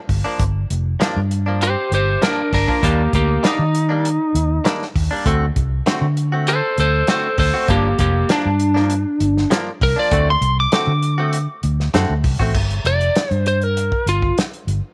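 Straight-eighth soul blues in a smoky, mournful mood, this passage is cut from a longer piece and moves through Gm7, Ebmaj7 and D7 before landing on a bare G5 chord at 12.5 seconds. A dark, round, foam-muted fingered electric bass sits up front, with a small-room acoustic drum kit whose punchy kick, medium-tuned snare, hi-hat and crash carry dark cymbals and a rolled-off top. A clean, direct-recorded electric guitar adds bright, twangy picked stabs coated in lush chorus, stopping at 12.6 seconds. Over this, a lightly driven lead guitar takes a solo from 1.6 seconds, its slightly broken-up, compressed, picked tone sitting prominently in the mix. A small room ambience surrounds the whole band.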